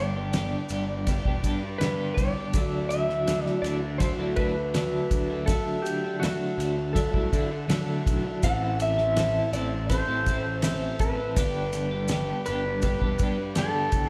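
This sounds like a band playing live in one large studio room, with a moderate reverb lending the sound some space. The music is a dark, trippy psychedelic rock excerpt at 82 BPM in a straight 4/4, tuned to A4 = 436 Hz and cut from a longer piece. A bright, twangy, clean twelve-string electric guitar riff with tremolo sits up front beside a slightly broken-up, compressed slide guitar melody. Beneath them, a fuzzy, overdriven picked bass holds the low end, and a buzzy vintage combo organ sustains chords in the background. From 0.3 s a cloth-damped acoustic kit thuds in up front, with a fat snare, tight kick, ride cymbal and a rolled-off top, joined by grainy, mellow maracas set back in the mix. The harmony moves from G to Dadd9 at 2.5 s, then to Am before returning to G.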